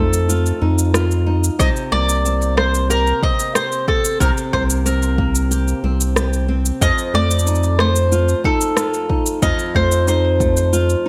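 A digital ambience frames this intimate, autumnal folktronica excerpt, which moves at 92 BPM in a straight 4/4 and sits in C dorian. An up-front mandolin carries the melody with picked double strings and a round tone, trailed by digital delay. Beneath it, a flamenco guitar is fingerpicked in arpeggios with warm, fresh strings, also touched by digital delay. A dark, wave-folded analog bass holds sustained low notes with a fast attack. Tape-warm electronic shaker and rim click play throughout, and a deep electronic kick enters at 1.6 s, both re-recorded in a large room. The harmony moves from F7 to C5 at 1.6 s and returns to F7 at 6.8 s.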